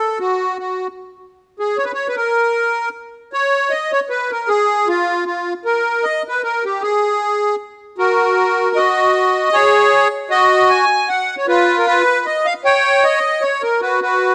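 A close, detailed recording set in a moderate recital-hall reverb captures a solo accordion with a reedy, sweet tone and light tremolo tuning, sitting full and up front. This nostalgic, whirling musette excerpt moves in a brisk 3/4 at 155 BPM with a gentle swing on the eighth notes, and is cut from a longer piece. The opening passage gives way to a second section at 8.0 seconds; shortly after, at about 9.1 seconds, an Absus4 harmony colours the line before the accordion returns to unaccompanied melody.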